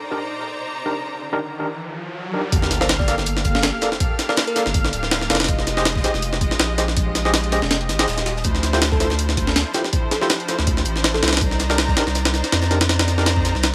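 Dark and atmospheric, this drum and bass excerpt in a jungle style opens on a lush, bowed symphonic string section holding sustained minor-ninth chords, while an overdriven tine electric piano, barky and pushed through a combo amp with fast tremolo and dub echo, places stabs in the background. An electronic riser builds from 1.0 seconds and gives way to a sub drop and impact at 2.5 seconds, where the full groove arrives. From that point a compressed, pitched-up jungle sampler-style kit sits up front with a thumpy kick, a medium-tuned snare and hi-hat, its tape-warm grit carrying a light swing, while a very quiet acoustic funk kit adds a high-tuned snare and hi-hat from a small room. Beneath them a deep, saturated sine sub bass sits thick and sustained. A bell-like FM electric piano sparkles in the background with short decaying melody phrases treated with chorus, phaser and dub echo, first around 2.8 seconds and again at 8.7 seconds over Dm9 as the chords move back to Cm9, all set in a light studio reverb.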